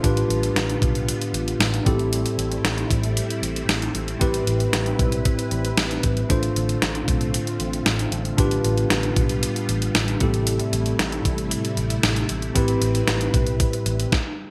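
1980s-style pop at 115 BPM in A minor, urgent and moody, cut from a longer piece, where a clean 12-bit drum machine with a thumpy kick and medium-tuned snare sits up front over a dark, foam-muted, punchy fingered electric bass, a mellow tine electric piano heard through built-in speakers carries chords moving from G7/A through Am7, Cmaj7/A and Dm7/A, and a vintage sawtooth string machine of violas holds soft-attack chords with ensemble chorus, all set in moderate plate reverb and bright digital production.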